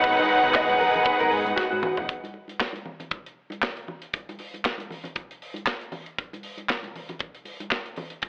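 A joyful, danceable disco groove at 117 BPM in 4/4, swung on the 16ths, is driven by an acoustic, up-front drum kit of tight kick, medium-tuned snare, hi-hat, toms and handclaps that plays throughout, with bright, damped congas joining at 0.2 s. Over a G#m9 chord, lush bowed strings carry an up-front second line above smooth-topped sustained string chords in the background, while a round, amped hollow-body bass holds the low end and a dark, compressed electric guitar with subtle chorus adds accompaniment beside a clean guitar solo. A drum fill from 1.6 s leads into a section at 2.1 s where only drums and congas continue, and the recording has a telephone-like tone in a moderate echo chamber reverb.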